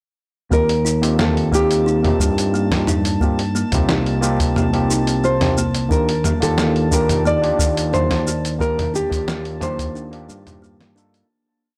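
Sunset chillout with a relaxed, smooth straight groove, where a dark, full-bodied thumb-plucked nylon-string guitar carries a motif-based melody of call phrases through analog delay over barky, overdriven electric piano chords in a dotted rhythm and a growly, overdriven fingered bass with long gliding notes. A woody, hollow kalimba loops a soft six-step arpeggio that drifts against the bar, while a dusty, compressed sampler-style kit with hi-hat, shaker, snare and toms plays a light lounge beat over a deep, soft electronic kick. A glassy, held high note enters at 1.2 seconds in the background, and the dry, gritty recording fades out from 7.7 seconds to the end at 11.3 seconds.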